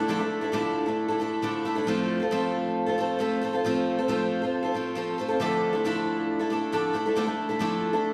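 A picked twelve-string acoustic guitar plays alone from the start, its fresh strings giving a shimmering, octave-doubled sound that sits up front within a long church reverb. This reflective, dusty rock passage in D minor moves at 136 BPM in a straight 4/4, drifting from Dmadd9 to F at 1.9 seconds and back to Dmadd9 at 5.4 seconds. It is an 8.1-second fragment cut from a longer piece.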